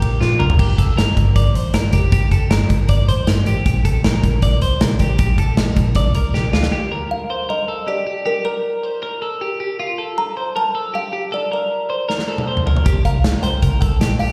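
This nostalgic, breezy stretch of jangly indie pop, cut from a longer piece, opens with a drum fill on a big rock kit, its punchy kick and bright cymbals up front, under a twangy, clean twelve-string electric guitar picking compressed arpeggios in the middle register. A dark, round, foam-muted vintage bass anchors the straight 156 BPM 4/4 groove in Bb major as the harmony moves through Gm and Bbadd9. At 6.7 seconds the bass and drums drop away, leaving the guitar alone until a woody, mellow kalimba enters at 7.1 seconds with a soft, boxy melody over Eb and Bbmaj7 harmony. Both guitar and kalimba carry slapback echo and digital delay. The drums return with a fill at 12.1 seconds, and the bass rejoins on a closing C7 chord. The performance sounds like a live gig heard through a venue's PA, wrapped in small-room ambience and recital-hall reverb.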